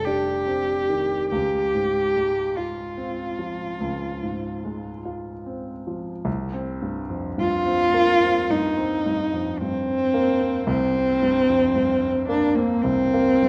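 Hazy and wistful, this short classical duo for cello and grand piano has an impressionist character and a rubato feel in 4/4, and it is cut from a longer piece. A single bowed cello carries the melody up front, its dark, woody tone close to the ear and shaded with vibrato. The grand piano accompanies with a warm, intimate and natural sound that also sits forward, its action noise clearly audible. The harmony moves from F7sus2 to Dbmaj7, and a new section arrives at 6.3 s on Bbsus2/C, carrying on to the close at 13.5 s. A moderate recital hall reverb surrounds the pair, while the worn, warbling character of old cassette tape gives the recording a warbly pitch drift.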